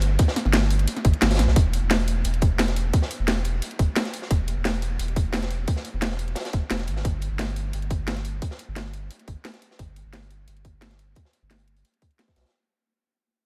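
A straight 4/4 groove rolls at 175 BPM in this melancholic liquid drum and bass excerpt, led by a tight, overdriven electronic kick that sits up front from 0.2 s. Alongside it, a layered drum and bass kit adds a cracking snare and bright hats, while a quieter, gritty, saturated breakbeat kit with a medium-tuned snare and rolled-off top sits in a small studio room. A deep, round, mellow sine sub bass holds sustained notes between E1 and B1 under light reverb; the kick drops out at 1.2 s and returns at 1.6 s, when the music begins fading out.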